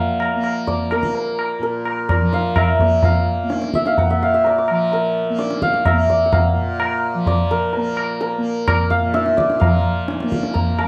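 Hammered santur rings out bright and shimmering up front, carrying the melody between Bb4 and D6 in this meditative, radiant Hindustani classical fragment in Bb major, set in a straight 7/4 at 128 BPM. Beneath it a softly plucked tanpura holds a buzzing drone from Bb2 to Bb3, and a low-tuned tabla with a short ring joins at 0.2 seconds. The sound is dry and close, like a 1970s-style studio recording with a touch of small-room reverb, and the passage runs 10.9 seconds, cut from a longer piece.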